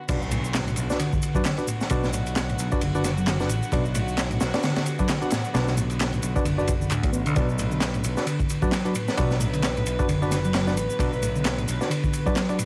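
Breakbeat excerpt at 132 BPM in B minor with a swaggering, gritty feel, built on an up-front crunchy breakbeat kit with a punchy kick and high-tuned snare, overdriven electronic shaker and handclaps, a bright picked electric bass with tube saturation, a reedy electric piano riff with fast tremolo, worn tine electric piano stabs with sampler grit and delay, and dark, floating sul tasto strings pumping in the background, opening on a very quiet impact at the drop over a bed of vinyl crackle and small room ambience.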